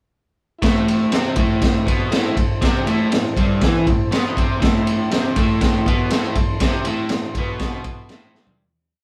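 A raw, gritty garage rock piece kicks in with a saturated breakbeat drum kit in a garage stomp groove up front, its punchy kick, high-tuned snare and dark cymbals rolled off at the top, alongside a bright, double-tracked overdriven guitar picking a crunchy octave riff. Behind them, a reedy vintage combo organ holds clean triad chords with light vibrato and adds a short fill at 3.9 seconds. The band, heard playing together in one lightly reverberant room, fades out from 6.6 seconds, with a drum fill at 8.4 seconds.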